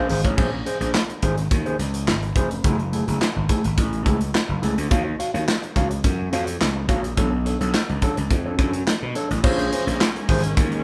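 Danceable and funky, this early-eighties boogie funk cut rides a growly, overdriven slap bass and a punchy, up-front acoustic drum kit with handclaps, hi-hat and crash beneath a dark, clean, fingered electric guitar riff, while an intimate grand piano with audible action noise and a lush, very quiet bowed string section sound only briefly at the opening and return at 9.4 s, all captured as a band playing together in one room with light reverb.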